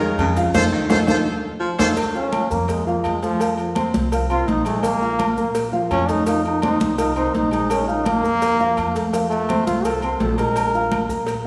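A wet, hall-like reverb surrounds this fiery, danceable salsa excerpt in Bb minor at 168 BPM, where a tight, bright trumpet section states the melody over a warm, punchy baritone saxophone second line before a band accent and drum fill close the opening at 2.0 seconds. From 2.2 seconds a brilliant, up-front trombone with vibrato takes a punchy solo, carried by a dark, mellow grand piano and a woody, thumpy pizzicato upright bass. Thick-skinned congas, ringing agogo bells and timbales, a high-tuned cowbell set in the background and grainy maracas keep the groove driving throughout.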